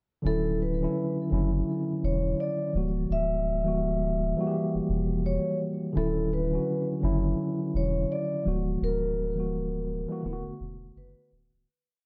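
Moderate studio reverb surrounds this short, nostalgic lo-fi hip hop piece in D major at 84 BPM, swung on the sixteenths. A mellow tine electric piano, colored by cassette tape and a low-pass filter, plays rhythmic drop2 chords with grace notes, repeated like a sampled loop, over a deep, round dub sub bass whose sparse line carries muted ghost notes and chromatic approach notes, both sitting up front. A close-miked, metallic vibraphone with soft mallets rings out a short looping melody through plate reverb and tape echo as the harmony moves between Dmaj9 and F#7b9/D, settling on D6 while the piece fades out from 8.8 seconds.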